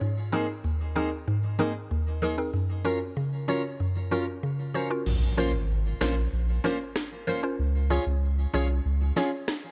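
This excerpt of hypnotic, bouncy dancehall in Bb minor moves at 95 BPM in a straight 4/4. It opens with a round, woody mallet-like synth pluck, an FM sound with a noise layer and chorus, sitting up front with fast-attack, decaying notes. At 0.3 s a picked steel-string acoustic guitar joins with full-bodied jumbo arpeggios on old strings, trailed by delay. At 5.1 s the chords move from Abadd9 and Gbmaj7 to Bbmadd9 and Db. There a thick, saturated sub bass arrives up front, along with an electronic island pop drum kit of crash cymbal, finger snaps, rim click and a sharp snare, plus an impact in the background. The recording sits in light reverb, coloured by the worn, warbly pitch drift of old cassette tape.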